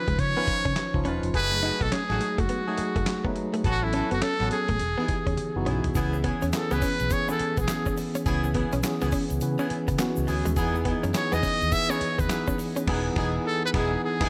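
This short excerpt opens on a light reverb and digital ambience, with a close-miked trumpet sitting up front against a gritty, compressed drum kit. It's punchy, confident R&B in a new jack swing style at 104 BPM in 4/4, with the 16ths swung at 62%. The muted trumpet carries the melody with a buzzy, breathy, whispered tone, light vibrato and a touch of digital delay. A tine electric piano, played clean through its built-in speakers, fills in the chords, moving from C#9 through F#m69, A69 and Emaj7 to C#m7. A dark, foam-muted fingered bass gives a round low end, and the sampler-style kit has a thumpy kick, a medium-tuned snare, handclaps, hi-hat, toms and crash. Further back, a direct-recorded clean guitar plays a picked riff through lush chorus, and a distant, roomy horn section adds jazz-style stabs. A grainy egg shaker comes in at 5.9 seconds, during the drum fill that leads into the second section at 6.0 seconds, ahead of a band accent near the close.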